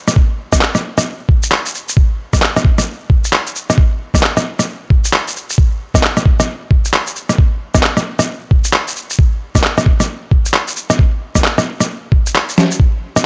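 A pitched-down, muffled percussion kit of rim click, shaker, handclaps and a medium-tuned snare opens this melancholic, ghostly future garage excerpt, swung on the sixteenths and sitting up front with overdrive and studio reverb. A thumpy, compressed electronic kick joins at 0.2 seconds, equally overdriven and close, while a dry, gritty hardware character and vinyl crackle colour the digital ambience. A drum fill arrives at 12.6 seconds just before this fragment of a longer piece cuts off.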